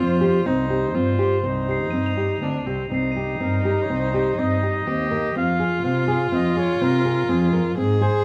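The recording has a dark, warm production with light reverb, and this short cut from a longer piece sets a restless, hypnotic mood. It is contemporary chamber music in C phrygian at 124 BPM, moving in an uneven 5/4 with a straight feel, and the harmony shifts from C minor to F minor. A clear, vintage-toned flugelhorn carries the solo melody in a pop style, with vibrato and scooped notes, while a smooth, even viola played by one bowed player sits up front on the second line. Beneath them, a full-bodied nylon-string guitar plays thumb-plucked arpeggios with a deep classical character and audible finger squeak, and a single bowed cello anchors the bass, sombre and up front, with a soft attack, expressive vibrato and portamento. From 1.7 to 4.0 seconds, bell-like crotales struck with hard rubber mallets add a mellow, shimmering ring from the background in a boxy small room, and a new section begins at 2.9 seconds.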